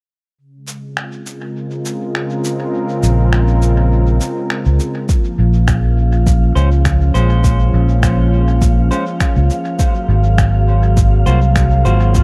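Ambient dub in a meditative, hazy mood, where a detuned, warbling analog pad holds chorused chords with vintage sampler grit from the start, muffled electronic shaker and finger snaps drift through dub echo, a growly, up-front fingered electric bass enters at 3.0 seconds, a deep layered kick arrives at 5.1 seconds, and an airy, wind-like noise texture and clean picked electric guitar stabs soaked in dub echo fill out an echo-heavy digital ambience.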